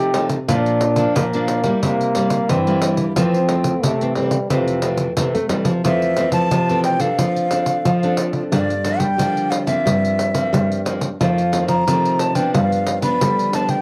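A breathy, whispered trombone opens this sunny, playful samba and choro in F major at 90 BPM, playing an intimate jazz-style solo with scooped notes and light vibrato until 5.1 s. At 5.9 s an up-front jazz flute takes the melody with a metallic, airy tone, vibrato, a soft attack and lifted highs, while a full-bodied, fingerpicked nylon-string guitar accompanies through cassette coloring and plate reverb, and a second nylon-string guitar carries the bass with tube saturation and audible finger squeak. A jingly pandeiro played with soft hands keeps the straight 4/4 pulse, and this home cassette recording sits in a small room with moderate reverb.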